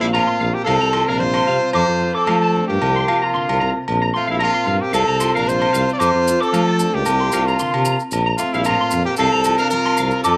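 Danceable and warm, this short excerpt of highlife guitar band music moves at 113 BPM with a light swing, a brilliant, forceful trumpet up front carrying the melody while an edgy alto saxophone adds a second line in the background and a mellow tuba with light vibrato holds down the bass. A picked, full-bodied steel-string acoustic guitar with audible finger squeak plays along behind, and a twangy electric guitar at the edge of break-up, treated with ensemble chorus, plays bright arpeggios high above, all moving through suspended and sixth chords such as Bbsus2, C7sus4 and F6. Ringing agogo bells sound from a distant, large room from the start, grainy maracas join close and dry at 4.9 seconds, and the home cassette recording gives the trumpet, saxophone and guitars a hazy tape character, with spring reverb around the band.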